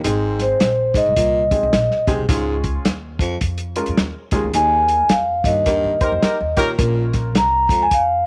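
A swung eighth-note groove in 4/4 drives this joyful slice of uptempo 1960s-style soul, built on a dry, muffled drum kit up front, woody pizzicato upright bass, a dark, slightly detuned upright piano with audible action noise, and a breathy, subtoned baritone saxophone riff. From 0.4 seconds a mellow vibraphone played with soft mallets carries the ringing melody, and a tight, jazz-style horn section adds a brief second line between 6.0 and 6.7 seconds during a band accent. Light reverb surrounds the intimate, lo-fi sound.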